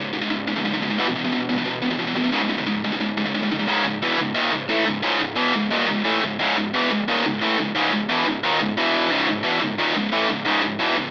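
A lone high-gain electric guitar, picked and double-tracked, sits up front with a bright, distorted bite and a trail of tape echo in this aggressive, relentless metal fragment cut from a longer piece. It opens in a heavy half-time feel over power chords before shifting at 3.7 seconds into a driving straight 4/4 passage built around C# minor. Light reverb and a narrow, AM-radio coloring give the whole recording a lo-fi, broadcast-like grit.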